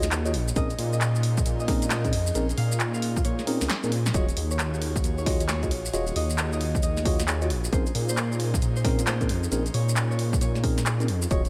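A dark, rumbling detuned saw bass sits up front in this moody, bouncy two-step UK garage excerpt at 134 BPM with swung 16ths, joined by a punchy electronic kick from 0.6 s that drops out between 3.2 and 4.1 s, with a drum fill from 3.7 s leading it back in; the tape-warm analog drum machine's handclaps, hi-hat and snare, close, grainy maracas, mellow tine electric piano stabs with analog delay, a ringing fingerpicked concert harp melody with tape echo, and a soft, breathy pad with chorus and sidechain pumping holding Bbm11 and Ebm11 chords in the background complete the picture, set in a light digital ambience.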